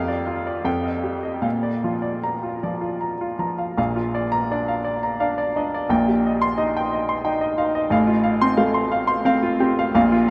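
Passionate and hopeful, this romantic classical character piece for solo piano, an excerpt cut from a longer work, unfolds in Bb major in 3/4 at a flexible, rubato 74-90 BPM, its clear, natural baby grand sitting up front with short sustain across a range from A1 to C6 while a huge, wet reverb opens a vast, echoing space around it, as the harmony moves from Dm/F through Fsus2 to Bb, then to Cm7/Bb at 5.9 seconds and F/A at 7.9 seconds.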